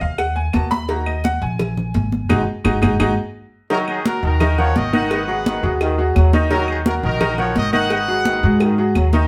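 Salsa at 171 BPM in Eb minor, this driving, fiery fragment of a longer piece opens with a brilliant, worn upright piano carrying a solo over Abm7 and Ebm chords, its slightly detuned tone sitting up front. A dark, woody pizzicato upright bass on steel strings anchors the low end, also up front. High-tuned congas with a thin, damped skin sound close and dry, while a tight cowbell and woody claves tick along in the background. The band hits an accent on Ab5 from 2.3 to 3.7 seconds, and at 3.7 seconds a punchy trumpet section takes the melody with light vibrato, joined by a clear trombone section playing a second line. The horns play tight, pop-style parts, and the whole group sounds like a band playing live in one room with moderate studio reverb.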